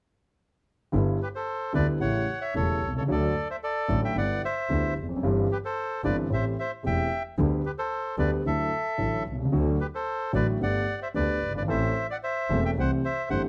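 A close, detailed recording with light reverb captures this brief, passionate and elegant tango, cut from a longer piece and played with a flexible, rubato feel in 4/4. A dark concert grand piano carries the accompaniment from 0.9 seconds, its mellow, intimate tone sitting up front with deep bass and audible action noise. A single bowed double bass plays the bass line alongside it, clear and intense with light vibrato and a smooth top. The bandoneon enters at 1.2 seconds with the melody, its reedy, vintage, band-limited voice placed up front and touched by a slapback echo. The harmony moves through colored chords such as G6, A7, Dadd9, Gadd9 and C6, giving the passage a graceful elegance.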